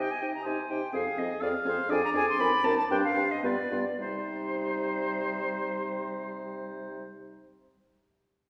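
In a straight 2/4 at 105-126 BPM, this quick classical-period movement for wind quintet in C minor feels urgent and stormy, slowing down between 1.4 and 4.0 seconds as the harmony moves from C minor through F minor and G7 back to C minor at 4.0 seconds. A pure, expressive silver concert flute with vibrato and a crisp attack carries the melody up front, over a warm oboe second line, a clear clarinet and a mellow, close-miked French horn in the accompaniment, and a dark bassoon bass with light vibrato. The oboe, clarinet and bassoon sound distant and roomy, and this short cut from a longer piece sits in a reverberant recital hall.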